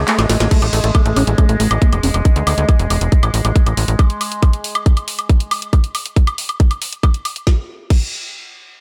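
Light digital ambience frames this hypnotic, alien psychedelic trance cut, where a wave-folded drone with moving overtones, phaser and sidechain pumping sits over a nasal, punchy sequencer bass, a squelchy, resonant acid bass riff with chorus and dub echo runs through a filter sweep until 2.2 s, a drum kit of woody snare and bright hats enters with a brief break and fill, and an up-front, tight electronic kick drives from 0.5 s through a closing chordless stretch at 7.5 s.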